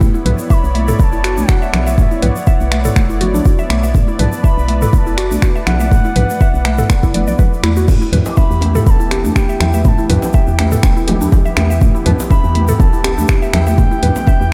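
A lightly reverberant mix opens this spiritual afro house excerpt at 122 BPM in E dorian, moving from Bm to Em at 7.9 seconds. A deep, layered, tape-warm electronic kick sits up front over a tape-warm deep house kit of crash, finger snaps, hi-hat and toms, while bright, high-tuned congas and a grainy egg shaker sit distant in a large room, and a saturated, very quiet djembe joins at 7.9 seconds. A dark, round FM bass and a smooth, detuned analog pad pump under sidechain, a mellow, woody mallet-like pluck spins chorused arpeggios through tape echo, and from 0.5 seconds an airy, reedy bansuri carries the melody with vibrato.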